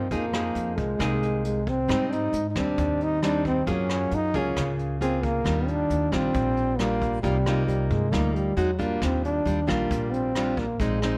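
Romantic and sophisticated, this bossa nova excerpt moves at 135 BPM in a straight 4/4 in Eb major, running about 11 seconds. A mellow, up-front trombone carries the melody with a light vibrato, close-miked and forceful yet punchy in its jazz phrasing. Beside it, a nylon-string guitar with fresh strings is fingerpicked in a classical manner, giving the accompaniment a warm, up-front tone. Underneath, a pizzicato upright bass on gut strings sounds woody, dark and thumpy, while a brushed jazz kit of hi-hat, boomy kick and rim click sits in a studio room with a rolled-off top. The harmony drifts through lush chords such as Fm7, Abmaj7, Gbmaj9 and Cm11, with a brief Emaj9 at 8.6 seconds before settling on Ebmaj9, all wrapped in light reverb.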